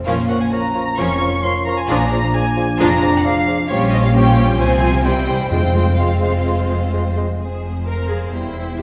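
A mellow bassoon sounds first in this urgent, stormy excerpt from a quick classical-period orchestral movement at 131 BPM in Bb minor, with a rubato feel, as a vibrato-rich violin section carries the melody over a second, clearer violin section, an airy flute, a dark cor anglais, a clarinet, a lush viola section, a French horn section's sustained chords, and an intense cello section and focused double bass section in the bass, before the music turns to F minor at 3.7 s and hard-mallet timpani strike dry and articulate at 5.5 s, all set back in a reverberant concert hall.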